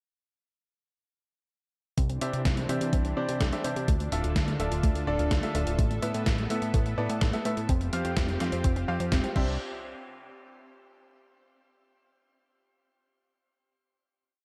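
A thumpy, overdriven four-on-the-floor kick drives this playful, danceable italo disco piece alongside a gated 80s drum machine's closed hats, gated-reverb snare and crash, while a fat, octave-jumping analog bass, a warbling unison pad with chorus, and a background pluck arpeggio with 12-bit grit and tape echo share a dark production from 2.0 seconds, joined at 2.2 seconds by a brilliant baby grand playing off-beat stabs, with filter sweeps on the pluck and the piano, until a final hit at 9.6 seconds.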